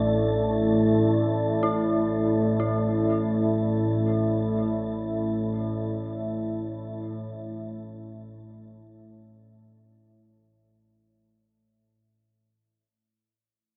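A deep, moody pad of detuned sawtooth layers with a sub octave sits up front, holding a mellow, slow-blooming chord under chorus and reverb in this cavernous, dark ambient fragment cut from a longer piece. Beneath it, a calm, nasal organ-like drone sustains low notes, while an eerie, inharmonic FM bell plays decaying arpeggios in the background through a diffuse delay, and a faint, breathy wind-like noise layer hovers high above. The whole dreamy mix is soaked in plate reverb and fades out from 1.0 seconds to its end at 11.5 seconds.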